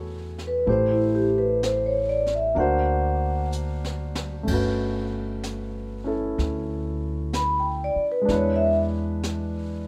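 The vibraphone, played with medium mallets and motor off, carries a metallic, ringing melody through a slow, late-night romantic jazz ballad at 63 BPM with swung eighths, over an intimate grand piano with audible action noise, a woody, thumpy upright bass, and a brushed drum kit with dark cymbals that enters at 0.4 seconds and adds a fill at 3.5 seconds, all in a dry, close sound as the chords move from F#m11 through Daug7 and Gmaj9#11 to E7.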